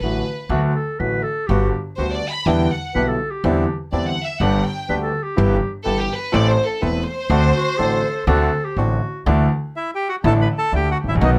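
A bowed chamber violin section takes the solo spotlight until 9.3 seconds, playing sul tasto with light vibrato and a soft, intimate attack in this playful, elegant tango fragment at 124 BPM in 4/4 with a rubato feel. A concert grand piano with a deep bass and a woody pizzicato upright bass carry the accompaniment, a mellow, distant clarinet adds a second line, and a reedy, boxy bandoneon punctuates with stabs from 1.5 seconds. At 9.8 seconds a dark, smooth second bandoneon sits in the background with a tape-echoed melody, all captured by close, detailed microphones in a dry room.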